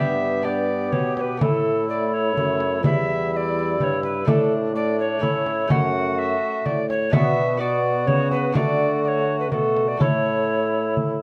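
A stately, festive renaissance-style consort dance in 3/4 at 125 BPM, cut from a longer piece, in which an airy, up-front alto recorder with vibrato and a crisp chiff carries the melody over a dark cor anglais second line, a delicate fingerpicked gut-string lute in the background, a warm bassoon accompaniment and a clear, distant trombone on the bass, while a small, bright, dry frame drum played with soft hands joins at 0.9 s, the consort ringing in a reverberant stone room.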